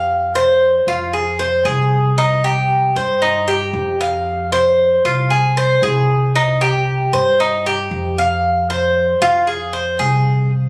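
Captured on a phone in the room, this short fragment of a longer piece carries a club's reverb and a compressed sound. It is Cuban son and guajira in a straight 4/4 at 115 BPM, with a sultry mood. The Cuban tres sits up front, its picked double strings ringing bright and metallic, some of them doubled at the octave, as it plays arpeggios from the start until about 10.5 seconds. Beneath it, the upright bass is plucked pizzicato on steel strings, sounding woody, growly and thumpy, and it stays lower in the mix than the tres. The harmony sways between F minor and C minor every bar, giving the whole passage a steady sway.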